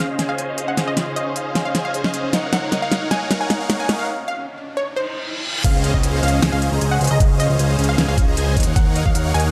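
A lush, bright future bass excerpt at 154 BPM in a half-time feel, emotional and dreamy, with light reverb and the drum kit up front. A detuned unison pluck carries the melody over huge supersaw chords run through a phaser, while a fingerpicked Celtic harp rings arpeggios in the background and an ethereal, airy pad holds chords until 4.1 s, with the pluck, harp, supersaws and pad all pumping to the sidechain over Dbmaj9 and Ebm7. After a build-up with crisp hats, a fat snare, a drum fill and a background riser with a reverse cymbal, the drop lands at 5.6 s, where a thick, nasal analog bass, also pumping, and a knocking, tape-warm electronic kick enter.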